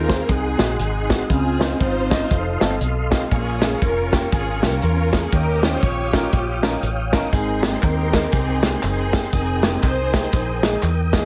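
Uptempo gospel with a hopeful, jubilant swing, led by a bowed studio string section singing the melody with expressive vibrato and portamento over a baby grand piano, whose short sustain and audible action noise give it an intimate feel. A smooth tonewheel organ holds sustained chords through a slow rotary speaker with chorus vibrato and key click, while a dark, round fingered electric bass punches underneath and a natural, small-room drum kit with a tight kick sits up front. Tambourine and group handclaps join in the background at 7.3 seconds, and the whole mix carries light reverb and a heavily compressed radio sound.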